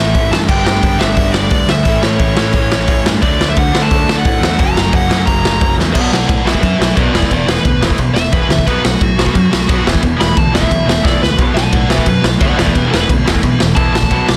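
A straight 4/4 punk rock drive at 176 BPM in B minor opens this angry, raw excerpt, with a raw garage drum kit sitting up front from 0.1 seconds, its punchy kick, medium-tuned snare, hi-hat and crash cymbal sounding saturated and gritty in a small, pumping room with a rolled-off top. Behind it, a cranked stack guitar adds a bright, overdriven picked riff, while a sludgy distorted guitar plays another riff with a warm, overdriven edge, and a growling picked electric bass, direct and amped with overdrive, fills the low end. A high-gain lead guitar carries the melody throughout, its dark, distorted tone colored by tape echo. The opening passage moves through G, A, D and F#, and after a drum fill at 5.8 seconds the lead guitar launches into a solo from 5.9 seconds over Bm and E5 and B5 power chords. Another drum fill lands around 11.0 seconds, and the whole mix stays dry, dense and heavily limited, with a modern, pressed-hard master.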